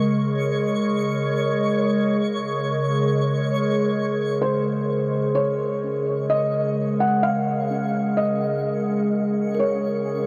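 Drenched in a huge, wet reverb, this luminous, serene ambient excerpt drifts at 64 BPM over a single Absus24/Db chord. The chord is held by a warbling, nostalgic tape-like pad with chorus that sits dark and up front, while a twinkling granular texture sparkles high above with an octave-up shimmer and fades in from 4.4 seconds. At that point a felt-muted upright piano enters with a soft, intimate melody touched by diffuse ambient delay, and from 5.8 seconds a very quiet kalimba adds woody, airy arpeggios.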